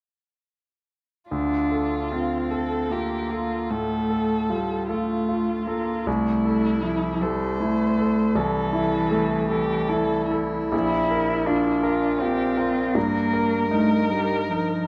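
Light reverb gives this slow, elegiac piano trio movement a sense of space, with a bright, polished concert grand sitting up front, its deep bass and long sustain carrying the accompaniment in D minor. The muted violin, veiled and distant, sings the yearning melody with vibrato, while the muted cello, dark with light vibrato, bows a second line. All three play from 1.3 to 14.9 seconds in a rubato 12/8 at 47-55 BPM, tuned to A4 = 437 Hz, moving from Dm through Am/C and Bb to Eb/G in a passage cut from a longer piece.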